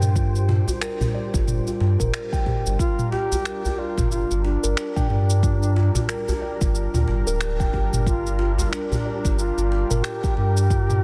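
Organic downtempo with a mystical, meditative air, built on a round sub bass up front, a smooth detuned sawtooth pad with chorus, and both carrying sidechain pumping, while a ringing steel tongue drum plays arpeggios through digital delay. An afro-pop kit of finger snaps, shaker and toms with soft clipping on the snare joins a deep, tape-warm electronic kick and a distant djembe with metal rattles and hard hands, all in a dense, heavily limited mix with light reverb. An airy, wind-like noise layer opens the excerpt and ends at 2.8 seconds, where a mellow duduk enters with vibrato and scooped, folk-style notes as the harmony moves to Gm7.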